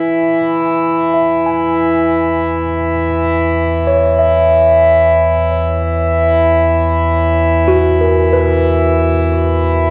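Ambient music at a slow 55 BPM in straight 4/4, this peaceful, weightless passage is cut from a longer piece and rests on a single C#m7/E chord, tuned slightly sharp to A4 = 441 Hz. A hand-pumped harmonium sits up front, holding a reedy, breathing drone between E3 and E4 for the full 9.9 seconds. Behind it, a worn, slightly out-of-tune tine electric piano plays clean, direct arpeggios from F#4 to G#5, with tape echo trailing its notes. From 0.1 seconds a round sub bass holds a deep, mellow sine tone on E2, its fast attack giving way to a sustained body with tube saturation. A wet small-room reverb and a homemade cassette sound give the whole a close, intimate, warm feel.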